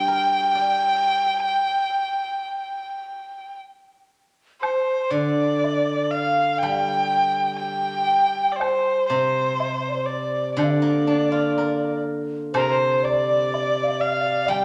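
A rich, earthy erhu sings a graceful, tender melody with light vibrato and portamento over the silvery, ringing fingerpicked steel-string zither in a freely flowing Chinese chamber piece, joined at 4.6 seconds by a hollow, airy bamboo xiao on a second line and a dry woodblock in the background, all set in a lush recital-hall reverb.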